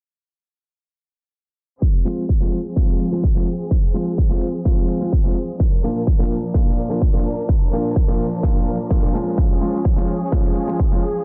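A punchy, up-front electronic kick drives this festival progressive house excerpt at 127 BPM in a straight 4/4, joined by very quiet, crisp hi-hats at 2.1 seconds, with an anthemic, euphoric mood in F minor. A deep-bass concert grand piano sits up front with sidechain pumping, while a lush, bowed symphonic string section with vibrato holds sustained chords in the background, pumping and swept by a low-pass filter through a progression of Fm, Bb and Db. The dense, heavily limited master carries little reverb, though the kick and hats have a tape-warm, large-room character.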